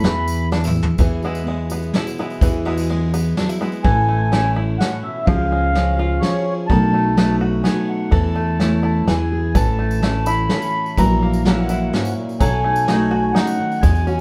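The sound is roomy and set further back, with a wet studio reverb lending this acoustic folk excerpt a gentle, hopeful glow. At 126 BPM in 3/4 time in A major, a fingerpicked dreadnought steel-string guitar carries the accompaniment throughout. A woody pizzicato upright bass sits up front, and a bluegrass banjo played with fingerpicks adds twangy, percussive arpeggios. A vintage brush drum kit with dark cymbals and a rolled-off top plays a short fill at 0.5 seconds, and a bright, jingly tambourine rides along at a low level before dropping out. After a brief opening phrase, the reedy, mellow accordion returns to take the melody from 3.8 seconds, its slow beating carried by a slapback echo, as the chords move from E through A, C# and B7. The tambourine returns at 9.6 seconds while the harmony turns toward F#7/A# and B7.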